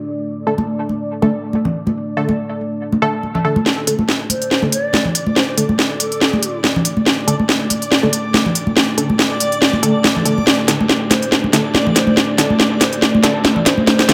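Heavy and meditative, this half-time deep dubstep excerpt opens on a dark, detuned ambient pad and muted, filter-swept dub chord stabs, with bright congas played by soft hands under dub echo, before an up-front garage drum kit with a cracking snare and crisp hats arrives at 3.7 s to drive a build-up and fill, joined by a reversed, granular swelling texture and a breathy, hollow ney that drifts in the background at 4.3 s and returns at 11.1 s, the mix sitting in moderate spring reverb.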